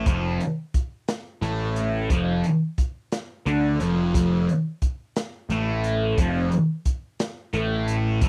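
A thick, bright fuzz guitar leads this short psychedelic rock excerpt, its double-tracked, picked riff sitting up front with distortion and a phaser coloring the tone across a range from F2 to D4. Beneath it, a punchy fuzz bass, picked and overdriven, holds down the low end in F major from the very start at 0.0 seconds. A crunchy breakbeat drum kit joins at 0.1 seconds with hi-hat, tight kick and a medium-tuned snare, its saturated, gritty sound mid-forward with a rolled-off top. The groove moves in a slow, straight 6/8 at 59 beats per minute, counted in dotted quarters, resting on an F chord. The mood is hypnotic and kaleidoscopic, captured in a dry, close 1970s-style studio sound with little reverb.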